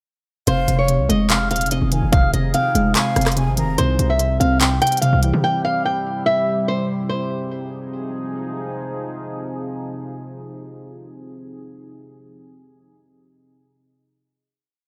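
A half-time trap beat at 145 BPM in F minor opens at 0.5 seconds, with a hard-clipped kick, crisp hats in fast rolls, handclaps and rim clicks up front, under a heavy, distorted 808-style bass that holds long sub notes with pitch slides. Over this brooding, menacing hook, a bright, boxy fingerpicked flamenco guitar repeats a looping melody with delay, a breathy concert flute adds a sparse counter-melody with vibrato, and a warbling, lo-fi pluck plays a detuned, chorused arpeggio in eighths. A deep, dark ambient pad swells in with slow attack and carries the sustained final Fm7 chord from 7.1 seconds, ringing out until 11.2 seconds, all set in light digital ambience.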